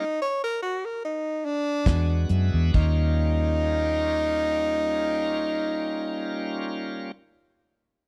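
Rollicking and swaggering, this short cut of straight-eighth soul blues in Eb mixolydian moves at around 66-76 BPM. It opens on a stop with a clear, jazz-style tenor saxophone solo over a slowing tempo, while a bright, shouting tonewheel organ with light overdrive, key click and slow rotary speaker adds a fill. At 1.9 seconds a round, foam-muted vintage electric bass and a cloth-damped, thuddy drum kit with fat snare, tight kick and dark cymbals come in up front as the harmony moves from E9 to Eb9, and the drums drop out at 3.0 seconds, all captured in a dry, close 1970s-style studio recording with small room ambience.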